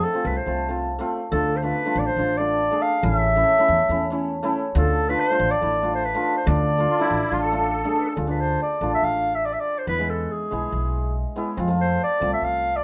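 Soulful and bittersweet, this klezmer fragment, cut from a longer piece, sets a mellow, distant-sounding clarinet melody in classical style over the ringing, shimmering accompaniment of a hammered dulcimer and a woody pizzicato upright bass in a straight four. A reedy musette accordion briefly adds a second line from 6.9 to 8.1 seconds, just before the music moves into a new section at 8.2 seconds. The moderate studio reverb gives the clarinet a roomy quality while each part stays up front.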